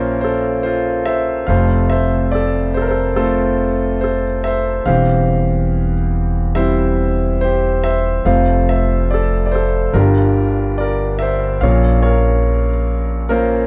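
Close, detailed microphones and light reverb frame this intimate, hopeful acoustic folk-pop ballad in F major, cut from a longer piece and moving at 71 BPM in a straight 4/4. A clear, boxy concert grand piano carries the melody up front, with deep bass, long sustain, audible action noise and a slapback echo, over a woody, dark pizzicato upright bass on steel strings, both playing throughout the 13.7 seconds as the harmony passes from Bbmadd9 through F, C/E, Gm7 and Bbm.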